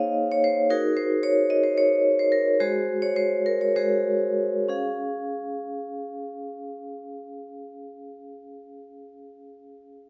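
A contemporary classical piece for solo vibraphone, this short excerpt has a warm, playful mood and moves in a rubato 7/8, with the eighth-note pulse ranging from 186 to 234 BPM. The vibraphone, struck with medium hard mallets, sits up front with a metallic, ringing tone and a medium motor vibrato, spanning Ab3 to F5 across its 10.1 seconds. The opening passage slows down through its first 4.7 seconds, moving through Bb7sus4, Ebmadd11 and Ab7 harmonies before a new section arrives on Db at 4.7 seconds, settling the music into its home key of Db major. The instrument is tuned to A4 = 441 Hz. A moderate recital hall reverb, with a 1.7-second decay, lets the notes bloom into the space, and the fragment is cut from a longer work.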